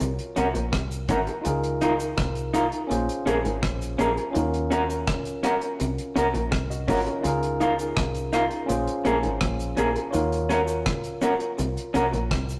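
Bright, twangy guitar stabs with spring reverb and tube saturation sit in the background of this sweet, smooth lovers rock reggae clip at 83 BPM, alongside an up-front warm, fingered guitar riff, a worn, slightly out-of-tune tine electric piano with dub echo, a dark, round, foam-muted fingered bass, a dry deep drum kit with a tight kick, hi-hat and rim click, and a faint cabasa with dub echo, all cycling through Ebm7, Db69 and Bbm7 in a rough rehearsal-room sound with a stone room reverb.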